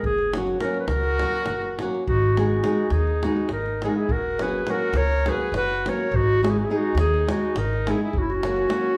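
A straight 7/8 pulse at 208 eighth-note beats drives this festive, wild Balkan wedding-band piece in F# mixolydian, cut from a longer piece, with a tight, close and dry davul beneath a woody, thumpy pizzicato upright bass that sits up front as the chords swing between F# and G#m. A warm, smooth-topped clarinet leads the melody in classical style, while a dark, fingerpicked flamenco guitar enters at 0.3 s and a clear trumpet with light vibrato adds a softer second line from 0.9 s. The band plays live together in one room, bathed in a wet, large studio reverb.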